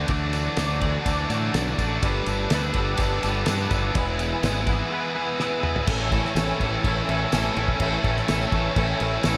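Upbeat and jangly, this indie rock excerpt in A mixolydian moves at 125 BPM in a straight 4/4, with a scooped, high-gain guitar riff carrying distortion, lush chorus and analog delay up front beside a twangy, clean electric guitar riff shimmering with ensemble chorus, all over a growling, overdriven fingered bass. A cloth-damped, thuddy drum kit with a fat snare and dark cymbals joins at 0.1 seconds alongside a jingly tambourine in the background, while a mellow, flute-like tonewheel organ holds soft chords through a slow rotary speaker. The chords move from Dadd9 through Gadd9 to E, and a drum fill at 5.4 seconds leads into a new section landing on A, all soaked in a dreamy plate reverb.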